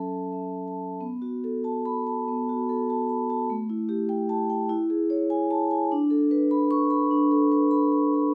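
Close, detailed microphones and light reverb in a boxy small room put a metallic, ringing vibraphone up front, played solo with medium mallets and the motor off, in this short, hypnotic and reflective cut from a contemporary classical piece in B minor, moving in 4/4 at 98 BPM with uneven, rubato beats across a range from F#3 to C#6 as the harmony passes from F#m7 through B5, A5 and E6 to D5.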